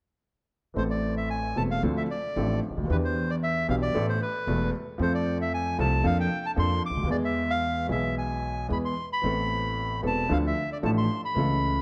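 A warm, present baby grand piano opens the passage at 0.7 s, joined almost at once by a reedy, vintage-toned bandoneon carrying the melody up front and a woody, thumpy pizzicato upright bass on gut strings. This tense, melancholic tango in A harmonic minor moves at 113 BPM with a rubato feel, its harmony travelling from Am through Dm7, Em7, F and Bbmaj7/F to a lingering E before settling on Amadd9 and Dm. Close, detailed microphones and a moderate scoring-stage reverb frame this fragment, which is cut from a longer piece and runs to 11.8 s.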